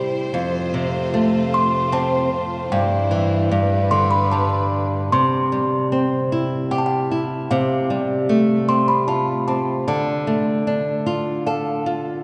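An up-front, fingerpicked flamenco guitar with audible finger squeak provides the accompaniment for this sleepy, tender children's lullaby in 3/4. It is joined by intimate bowed chamber strings with soft attack and vibrato that sustain chords until 5.1 s, and by a delicate, slightly out-of-tune music box that enters at 1.5 s with a tinkling, airy melody. The whole excerpt sits in the long, wet reverb of a church.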